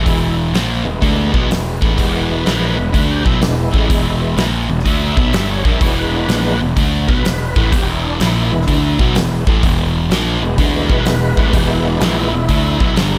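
A swung 126 BPM groove in 4/4 drives this gritty blues rock and southern rock excerpt in E mixolydian, with a huge arena drum kit up front, its fat snare and punchy kick joined by hi-hat. A sludgy, dark, double-tracked distorted guitar pounds out the riff over a round fuzz-laden fingered bass. A thick, overdriven tonewheel organ with key click, chorus vibrato and slow rotary speaker takes the solo from 0.0 to 13.2 seconds while also holding sustained chords, all in a light reverb.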